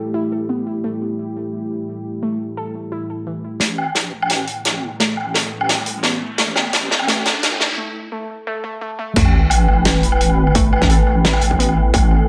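A dark, moody analog pad of detuned sawtooth and triangle tones with a sub octave opens this heavy, tense half-time drum and bass excerpt at 173 BPM, its slow-attack chords pumping under sidechain and chorus. A warbling, lo-fi pluck joins almost at once, spinning dusty arpeggios through phaser, delay and chorus, shifting from an A5 chord to Asus2. At 3.6 seconds a build-up begins: a deep, wobbling square-and-sine bass enters on a low A, a loose, gritty indie drum kit with a medium-tuned snare, dark cymbals, hi-hat and woodblock plays a fill, and filter sweeps run across the pad and pluck while a background riser climbs. After a short break, the drop lands at 9.2 seconds with a sub-drop impact and a distorted, tape-warm electronic kick joining the saturated, rolled-off kit, which sits up front. Light reverb and a small room ambience keep the mix close and murky, with the drums and kick loudest and the pad and pluck set back.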